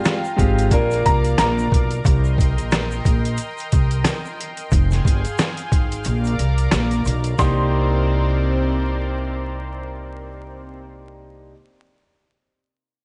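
A worn, slightly detuned upright piano melody and a smooth, vintage grand piano open this dark, tough boom-bap hip-hop excerpt in C minor over a thick, warbling chorused pad and a grainy egg shaker, as a gritty, pitched-down sampler-style drum kit with a thumpy kick is joined by woody pizzicato upright bass in a swung 90 BPM groove on Fmadd9, Bb and Cm7, the kick dropping out at 6.1 seconds before both pianos return at 7.4 seconds amid light small-room reverb and vinyl crackle.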